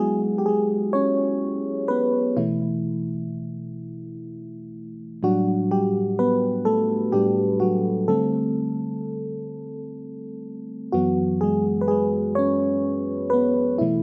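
R&B in a slow 6/8 at 42 BPM in F# Phrygian, this late-night, yearning excerpt is a solo for mellow FM electric piano, its round, dark, up-front tone touched with chorus and a noise layer, drifting through suspended chords from F#9sus4 to B7sus4, A9sus4 and D7sus4 before settling back on F#9sus4 at 10.9 seconds, all in a dry, close sound with little reverb.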